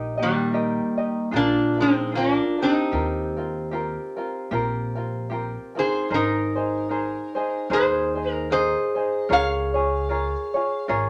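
Hawaiian music at 75 BPM in 4/4 with a swung eighth-note feel, dreamy and languid, this excerpt moves from Eb major into Ab major at 6.1 s. A nasal, metallic resonator slide guitar played with fingerpicks carries the melody up front, while a ringing vibraphone struck with medium mallets, motor off, adds a second line, both entering at 0.2 s. Beneath them, a light, fingerpicked tenor ukulele, also up front, picks out the accompaniment over a woody pizzicato upright bass with steel strings, all set in a wet studio reverb.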